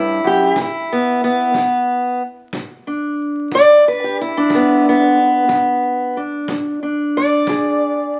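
The sound is that of a very old 78 rpm record, with vinyl crackle over a moderate large-studio reverb that gives the performance an aged, spacious air. This short cut from a longer piece is acoustic country blues in E mixolydian, soulful and rollicking, moving at 61 BPM in a straight 12/8 counted in dotted quarters. A fingerpicked steel-string parlour guitar carries the melody from 0.0 to 8.2 seconds, sitting up front with a dark, boxy tone and ranging from E2 to D5. From 0.6 to 7.6 seconds a quiet kick drum with brushes adds a tight, distant pulse that sounds as though it was captured in a small room. The harmony moves from a rootless A7 to an E7 with its third omitted.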